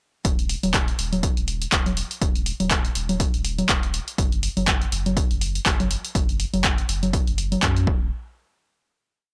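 From 0.2 seconds, a trippy, raw acid house groove at 122 BPM in Eb minor kicks off with an up-front, punchy four-on-the-floor kick, swung closed and half-open hats, low congas and a clapping backbeat from a tape-warm analog drum machine that sounds re-recorded in a small room, all riding over a deep, round sine sub bass playing a dotted rhythm between Eb1 and Gb2 with sidechain pumping, in a dry, gritty hardware sound that runs until a final hit at 8.1 seconds rings out to 9.3 seconds.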